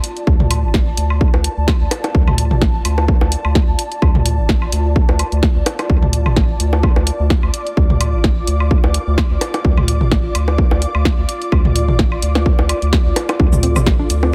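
Quirky and sparse, this minimal techno excerpt moves at 128 BPM in D minor, with a light swing on the sixteenths and a single D minor chord throughout. An overdriven, punchy electronic kick sits up front with a large-room sheen, alongside an analog drum machine playing cabasa, hi-hat and a punchy snare set in a smaller room. Electronic toms, woodblock and bongos add playful color, echoed through a digital delay. A round, deep analog bass carries the low end with a mellow, evolving tone, and an ethereal, airy pad with ensemble chorus and built-in reverb floats above, both pumping to the sidechain. At 13.4 seconds a hollow, bouncy square pluck with 12-bit sampler grit slips in at the back, alongside a very quiet pulsing gated texture, as the mix stays fairly dry overall.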